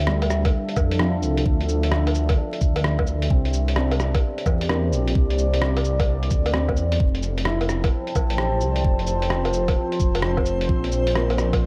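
Future garage at 130 BPM in D minor, this short excerpt from a longer piece feels melancholic and ghostly, with a 16th-note swing loosening the 4/4 pulse. A dark analog pad built from sawtooth and triangle tones with a sub octave holds slow-attack chords through chorus and phaser, while a detuned saw bass with a filter swell sits up front, menacing and evolving beneath it. A felt-muted upright piano stays in the background, soft and intimate, roughened by vintage 12-bit sampler grit and trailed by digital delay, and the pad, bass and piano all breathe with sidechain pumping. A lo-fi sampler-style kit of cabasa, hi-hat, rim click and woodblock sounds pitched down and muffled, as if re-recorded in a small room, and from 0.5 seconds a knocking, tape-warm electronic kick lands up front. The chords move from Dm11 through C13 and Fmaj9 to Bbmaj9, and at 8.5 seconds a reversed, granular texture swells in the background, bright and dreamy in its own reverb, all over a bed of vinyl crackle and light digital ambience.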